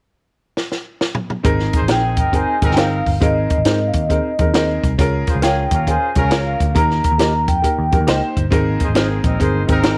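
This uptempo 1960s-style soul excerpt opens with a compact cocktail drum kit playing a fill from 0.6 seconds, its high-tuned snare and punchy kick sitting dry and up front. At 1.4 seconds the band enters in Ab major at 136 BPM with a swung, danceable feel: a dark, round muted electric bass and a clear upright piano whose woody, slightly detuned tone has a worn character and short sustain. A distant, roomy horn section adds a second line with tape echo, while a compressed, clean electric guitar plays stabs in the background. The melody comes from a close-miked vibraphone with soft mallets, metallic and ringing with a medium motor vibrato, which carries the tune until 8.3 seconds. Near the close, a very quiet, lightly overdriven tonewheel organ with key click and slow rotary speaker holds sustained chords as the harmony returns to Abadd9, giving the dry, upbeat groove a mellow glow.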